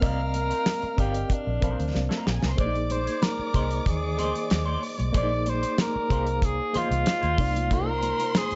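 Lush 1970s-style soul at 94 BPM in a straight 4/4, this short, bittersweet and silky cut from a longer piece rests on a Cm11 chord that moves to Bb9sus4 at 2.6 seconds and returns to Cm11 at 7.4 seconds. A mellow tenor saxophone carries the melody up front with vintage vibrato, while a warm studio string section plays a lush, bowed second line full of portamento and expressive vibrato. A reedy electric piano with a fast tremolo fills in the accompaniment, and an electric guitar through a small old amp plays a slightly broken-up, lo-fi wah riff in the background. Underneath, a round, foam-muted fingered electric bass sits punchy and up front beside a dry, polished 70s drum kit with a fat snare and tight kick, which plays a fill from 1.9 to 2.6 seconds. Very quiet, high-tuned congas played with soft hands sound distant, as if in a large room, and the mix carries a light studio reverb and a softened top end.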